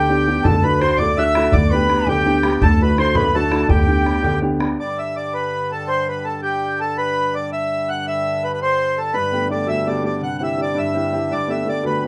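A cheerful, rollicking Celtic jig in G major at 110 BPM in 6/8 opens with a reedy, full accordion carrying the melody up front, a breathy, mellow metal whistle with vibrato and tongued chiff on a high second line, clear, woody upright piano, and a pizzicato upright bass with steel strings, while a damped, tight bodhran joins at half a second and sits distant in the background. The whistle drops out at 4.4 seconds, and at 4.8 seconds a nasal, breathing hand-pumped harmonium enters with a low drone beneath the dark, smooth accordion, before the open, short-sustained piano returns at 9.1 seconds over chords moving through Gadd9 and C. The band sounds as though it is playing live in one room, with a wet studio reverb around it, in this cut from a longer piece.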